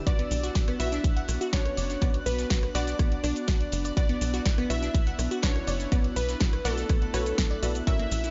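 Dreamy and emotional, this progressive house excerpt moves at 123 BPM in B minor, with an up-front punchy electronic kick, a house kit of punchy snare, bright hats, cabasa and rim click, and a very quiet, high-tuned acoustic kit adding ride cymbal and snare, all beginning at 0.1 seconds. A tight, nasal sequencer bass with tube saturation drives underneath, while a catchy, full-bodied lead colored by cassette tape and tape echo carries the melody over glassy wavetable arpeggios, lush warbling unison stabs with delay, an airy, breathy pad of sustained chords, and a faint twinkling granular shimmer. The pad, stabs, bass, arpeggios and granular layer pump against the kick, and the dry, close mix tops out softly, never reaching bright extremes.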